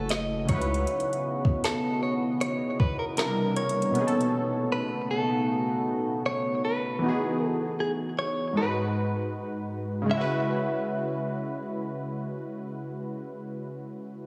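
A clean, direct-recorded electric guitar carries the melody through spring reverb and tape echo in this moody, late-night contemporary R&B excerpt at 78 BPM in C# minor, over round, detuned sawtooth analog keys with chorus, a deep, warbling ambient pad with sidechain pumping that drops out at 7.0 s, a mellow sine 808-style bass heard only in the opening second, and a smooth electronic drum kit of soft kick, woody snare and metallic hats that stops at 4.3 s, as the chords move from C#m11 through Emaj9 to C#m7 in an echo-heavy mix.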